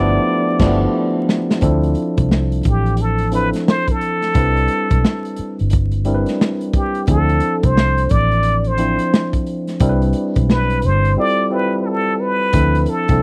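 A dry, close 1970s-style studio sound with vinyl crackle frames this introspective, soulful neo-soul groove, where a breathy, whispered plunger-muted trumpet plays an intimate jazz-style solo from 1.6 seconds over a worn, slightly out-of-tune tine electric piano through overdrive, a round, foam-muted fingered bass, and a gritty, saturated breakbeat kit that enters at 0.6 seconds with a fill before a break at 11.2 seconds.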